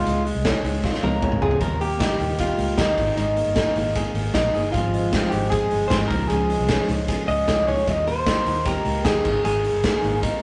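A straight 4/4 pulse at 153 BPM drives this youthful, bright stretch of jangly indie pop, cut from a longer piece. The raw garage drum kit sits up front with a punchy kick, a medium-tuned snare, hi-hat, ride, crash and toms, its sound gritty and saturated with a rolled-off top, and it plays a fill from 0.8 to 1.6 seconds. Underneath, a vintage muted fingered electric bass gives a round, foam-muted low end, while a clean, direct-recorded electric guitar plays scooped, compressed arpeggios bathed in spring reverb. The melody comes from an up-front electric guitar through a small old amp, slightly broken-up, and a very quiet picked steel-string acoustic guitar joins at 1.6 seconds, with faint finger squeak. The chords move through Db, Eb, Absus2 and Fm/Ab, and the whole has the rough feel of a rehearsal-room recording, with tube saturation, a wet small-room reverb and a dulled high end.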